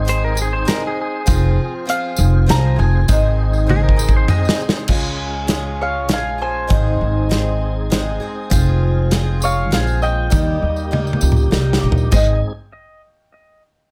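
Lightly reverberant, this jangly, warm folk rock and heartland rock clip in Ab major moves at 100 BPM in a straight 3/4, with a boxy, shimmering, octave-doubled twelve-string acoustic guitar picking the accompaniment, a woody pizzicato upright bass and a punchy small-room country drum kit with dark cymbals up front, a jingly, saturated tambourine, and a full tonewheel organ with key click and fast rotary speaker holding chords in the background, while a mellow, round mandolin with analog delay carries the melody and takes a solo from 4.9 s, a clean pedal steel guitar with fingerpicked slide and volume swells adds a second line until 4.6 s and returns at 12.1 s, and drum fills lead into each new section.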